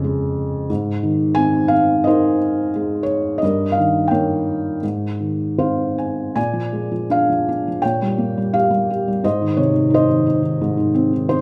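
A felt-muted upright piano plays alone from the very start, its soft, intimate tone sitting up front with the mechanical noise of its action clearly audible, in a sunny, relaxed passage of lyrical classical solo piano with a free, rubato feel in 4/4. A short piano fill at 5.2 seconds leads into a second section at 6.4 seconds, where the harmony darkens briefly through a minor-sixth color before settling home. A moderate recital-hall reverb surrounds the piano throughout this fragment of a longer piece.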